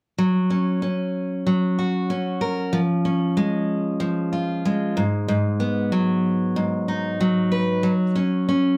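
A picked steel-string dreadnought acoustic guitar, full-bodied and up front, carries this easy-going, sunny pop accompaniment from 0.2 to 8.8 seconds in a straight 4/4 feel, tuned a touch below standard pitch. It moves through F#, C#/E#, G#m7 and D#m7/F#, spanning G#2 to B4. A wet small-room reverb wraps the guitar in this short fragment cut from a longer piece.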